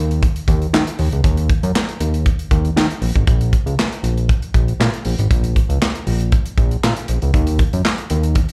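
A straight 4/4 groove at 118 BPM drives this short, late-night fragment of early-eighties boogie funk. The modern studio drum kit sits up front with a punchy kick, a medium-tuned snare, hi-hat and handclaps, while the fat analog bass, detuned and saturated with sawtooth and square-wave tones and a filter sweep, holds long, mellow notes from Ab1 to Eb3. The sound is of a live gig heard through the venue's PA, carrying a touch of club reverb.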